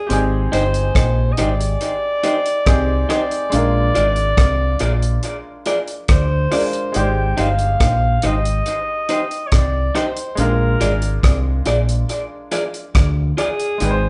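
Lovers rock reggae at 70 BPM in 4/4 with a straight feel, this short excerpt cut from a longer piece is tender and smooth, moving between Abmaj7 and Bb7 chords. A breathy alto saxophone carries the melody up front from the start, its subtone and scooped notes giving it a vintage, jazz-style solo character. Beneath it, a clear grand piano with a slightly worn, natural tone provides accompaniment, while a fingered electric bass sits prominently with a dark, round, punchy sound. The damped 70s drum kit, also forward in the mix, plays hi-hat, tight kick and rim click with a dry, rolled-off top and a touch of tape echo. An electric guitar through a small old amp adds picked, compressed stabs that are slightly broken-up, also carrying tape echo, entering at 0.5 s and stopping at 13.5 s. The band sounds like it is playing live together in one large studio with moderate reverb, and the top end is softly capped, lending the whole a mellow, period feel.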